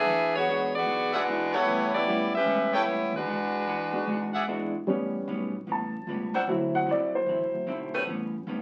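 A swinging, energetic jazz excerpt at 150 BPM, cut from a longer piece, opens with an edgy saxophone section carrying the melody with light vibrato while a bright trumpet section punches stabs over woody pizzicato upright bass, a dark, clean hollow-body archtop guitar and a natural, up-front grand piano, moving through E9 and A9 chords. When the horns drop out at 4.4 seconds, the piano takes a solo from 4.9 seconds over A9 and D9 harmony, and a bright saxophone section enters at 6.3 seconds with tight sustained chords. A wet, short studio reverb and the crackle of a very old 78 rpm record give the whole thing an aged, vintage sheen.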